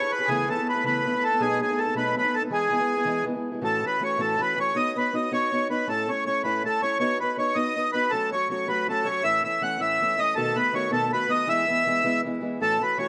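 Cheerful and rollicking, this short Celtic jig in 6/8 sets a reedy, up-front accordion on the melody over a boxy, fingerpicked parlour steel-string guitar with audible finger squeak, while a very quiet, shimmering hammered dulcimer adds a second line until 5.6 seconds, all in a small, lightly reverberant room.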